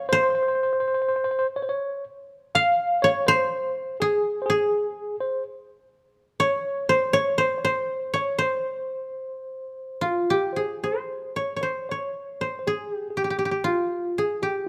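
From the first moment, a mellow, woody koto plucked with fingerpicks carries a calm, austere melody in C miyako bushi, with a clean tine electric piano up front on a second line through its built-in speakers, both moving freely in 4/4 at roughly 52-63 BPM, captured by close, detailed microphones in a moderate recital hall, before the Japanese chamber music turns to a new section at 10.6 seconds in this cut from a longer piece.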